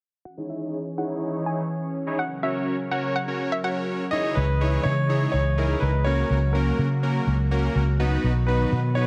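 Set in light reverb and a digital ambience, this bittersweet, confident pop excerpt in C# dorian moves at 124 BPM in a straight 4/4, cycling between C#madd9 and F#/C# before turning to B near the end. A hollow, nasal square pluck carries the melody through chorus and tape echo under a filter sweep for the first four seconds, while a lush, warbling unison pad holds sustained chords and a fat, detuned polysynth adds bold accompaniment. At 4.1 seconds a clear, intimate concert grand piano picks up the melody with its action noise audible, and at 4.4 seconds a dark, foam-muted fingered electric bass arrives, round and up front.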